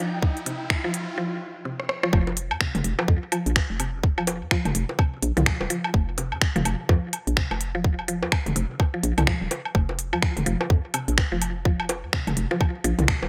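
A hollow, bouncy FM bass arrives at 2.1 s with layered electronic woodblock, bongos and toms as this quirky, hypnotic minimal techno excerpt drops at 126 BPM with swung 16ths, joining a tight, up-front kick and a clicky kit of finger snaps, hi-hat and rim clicks with gated reverb, while a woody, round, mallet-like synth pluck riff with chorus, delay and sidechain pumping plays from the start, opening over a short riser and a grainy, flickering background texture, in a bright 1980s-style digital production with light reverb.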